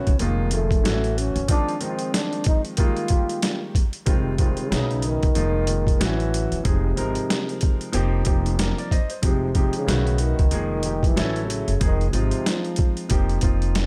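A mellow, nocturnal jazz-hop cut at 93 BPM with a swung sixteenth-note feel, built on a loop of lush extended chords such as Bb7sus4/F, A6, Ab6 and Fm9 that returns after 4.1 seconds. Up front, a gritty, pitched-down boom bap drum kit with a thumpy kick and high-tuned snare carries overdrive, while a woody, gut-strung upright bass plucks deep pizzicato lines beneath an open, long-sustaining concert grand piano. Over it all, a breathy, whispered trombone with light vibrato sings a distant, intimate solo melody in a small room's ambience until 13.1 seconds.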